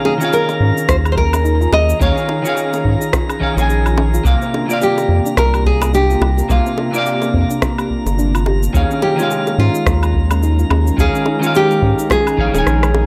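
Sunset chillout with a wistful, swung 16th-note feel, where a bright, fingerpicked nylon-string guitar carries the melody with audible finger squeaks over a clean, picked electric guitar, a mellow airy pad, a soft round pluck in the background, a glassy drifting-harmonics texture, high-tuned bongos, an electronic shaker with rim click and woodblock, a dry deep electronic kick from 0.9 seconds and a round, nasal analog bass up front from 0.6 seconds, all on a dry, gritty hardware recording that closes on a drum fill at 12.7 seconds.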